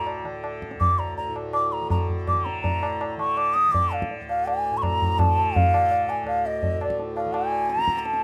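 An airy, up-front bansuri carries the melody through this solemn, introspective Hindustani classical excerpt in raga Todi on D, tuned to A4 = 438 Hz, its tongued, expressive phrases touched with vibrato and ranging from D5 to Eb6. Beneath it a softly plucked tanpura sustains a buzzing, shimmering drone, while a low-tuned, closely heard tabla with a short ring enters at 0.1 s in a straight 4/4 at 165 BPM that gathers speed throughout. Light reverb surrounds the trio, and the music moves into a new section at 2.6 s.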